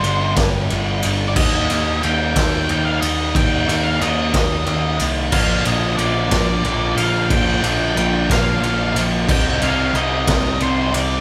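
Recorded live by a band in one large studio room with moderate reverb, this brooding, angsty quiet-loud alternative rock fragment in 6/8 sets an up-front, gritty raw garage drum kit with a boomy kick and rolled-off top beneath a dark octave-fuzz lead guitar melody, an overdriven fuzz picked electric bass, a thick fuzz guitar riff in the background and a very quiet, double-tracked tight distorted guitar, with a bright, compressed overdriven electric guitar joining the riffing at 5.3 s.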